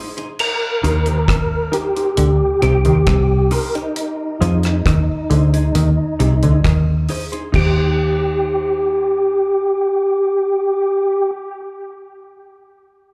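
Roots reggae at 67 BPM in Eb major, this sunny, uplifting excerpt feels like a live club set heard through the venue's PA, with club reverb around the band. A percussive tonewheel organ carries the melody up front, its round, dark tone marked by key click, third harmonic percussion, chorus vibrato and a fast rotary speaker, plus tape echo and slapback echo. Beneath it, a vintage muted fingered electric bass sits prominently, foam-muted, amped and punchy, while a dry, deep reggae drum kit with a tight kick, hi-hat, rim click and crash cymbal drops out at 7.8 seconds. A mellow electric guitar adds clean, compressed accompaniment treated with phaser, tape echo and slapback echo, and a stringy muted clav plays a riff in the background until 6.9 seconds. The harmony moves from Eb6 to Fm7 at 4.0 seconds and returns to Eb6 at 7.5 seconds as a new section begins, leaving organ, bass and guitar to carry the close of this fragment cut from a longer piece.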